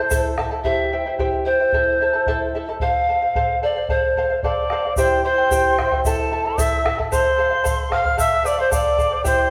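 A pure, wooden pan flute carries the melody up front from the first moment over a shimmering, fingerpicked charango and a deep, dark bombo, setting a melancholic yet festive Andean folk mood in a brisk two-beat pulse. After a brief touch at the very start, a breathy, reedy quena returns with a second line at 4.4 seconds, and a grainy tube shaker, heard only in a quick tap near the opening, comes back at 5.0 seconds as the harmony moves through C, Am and F. The whole cut from a longer piece rings in the lush reverb of a recital hall.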